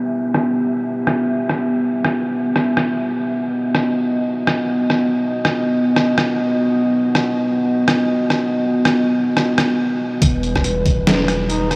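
A swung, half-time groove from a muffled, pitched-down trip hop sampler kit of hi-hat, rim click and snare moves under a filter sweep in this brooding, dark deep dubstep excerpt, while a detuned, nasal analog pad with chorus sustains shadowy chords from the start. At 10.2 s the drop arrives with an overdriven, knocking electronic kick and a round, soft dub sub bass, and at 11.5 s a mellow duduk slips in with vibrato, scooped notes and vintage 12-bit grit. The whole mix is dreamy and low-passed, soaked in huge ambient reverb with a hint of small-room air.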